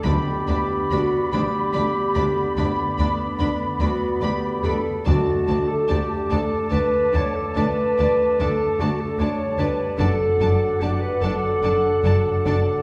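A serene, warm orchestral passage cut from a longer classical work opens with the full ensemble sounding together in D major, moving at a slow, rubato 48 beats per minute in 12/8. Mellow French horns carry the most prominent sustained chords, backed by tight, roomy trombones in the background, while a lush, intense violin section sings the melody high in its range from a distance. Around it, a pure flute section with rolled-off highs, a distant oboe, a clear clarinet with a smooth top and a focused, close second violin section weave supporting lines. A very quiet, even viola section fills in the accompaniment, and a rich cello section and double bass section ground the harmony from below. Articulate timpani struck with hard mallets sit in the background until 6.3 seconds, as the harmony drifts from G over D to a D5 chord at 5.1 seconds and settles on D over F# at 10.0 seconds, all heard from further back in a reverberant recital hall.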